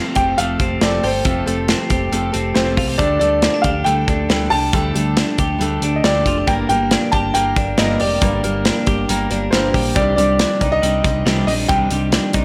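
Restless and bittersweet, this jangly indie pop excerpt moves at a brisk, straight 4/4 pulse over a short passage cut from a longer piece. An upright piano carries the melody in a high register, its woody, boxy tone revealing audible action noise and a long sustain, with a slapback echo trailing each phrase. Beneath it, a fingerpicked steel-string acoustic guitar with fresh strings offers full-bodied accompaniment, while a bright, twangy twelve-string electric guitar plays clean, compressed arpeggios that also carry a slapback echo. The picked electric bass and a punchy, up-front studio drum kit of hi-hat, kick and medium-tuned snare join at 0.2 seconds, the bass dark and round, the kit's top rolled off. The chords move from Fadd9 through Dsus4 and Gm to Cmadd9, all set in a light reverb with small room ambience.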